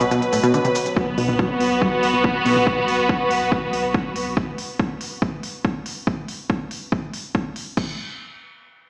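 A relentless, industrial slice of driving peak-time techno opens with an up-front bowed string section with light vibrato, a tight detuned sawtooth synth riff treated with chorus, phaser and tape echo, a thick triangle sub bass in the background, a brief moody pad drone, and an overdriven drum kit of crash, smooth hats and shaker, each pumping against the sidechain. A heavy overdriven electronic kick arrives up front at 1.0 seconds, while a filter sweep runs over the synth until 2.7 seconds. The mix sounds as if played on a big sound system in a bare stone room, with huge ambient reverb and a small-speaker edge, before the harmony drops out at 7.8 seconds.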